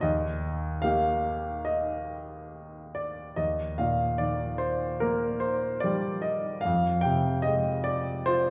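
A recital hall's lush reverb, with its 1.7-second decay, frames this short cut from a longer classical piece, heard from further back in the room. A baby grand piano plays alone, up front and intimate, with its action noise audible, spanning Eb2 to G5 in a calm, lyrical Eb major line at a rubato 73 BPM in 4/4. A new section begins at 3.4 s, and the harmony turns from Eb to Fm at 6.7 s, before the clip ends at 8.5 s.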